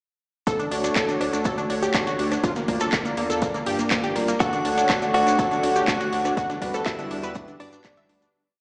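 A hopeful, euphoric progressive house drop opens at once with a bright, detuned unison pluck cycling a sixteenth-note riff over a pedal note through cassette tape and tape echo, alongside an overdriven four-on-the-floor kick, metallic house hats, claps and rim clicks, a very quiet gritty looped breakbeat with tambourine, and grainy hand-played maracas. Moments later a round, dark off-beat analog bass and mellow off-beat supersaw stabs enter, pumping along with the pluck. At 4.4 seconds a clean, direct-recorded electric guitar riff arrives, doubled an octave higher by an airy, dreamy chorused lead in the background, while a thick, warbling vintage pad sustains beneath. The whole piece sits in a huge ambient reverb with a small-speaker character and fades out from 5.7 seconds.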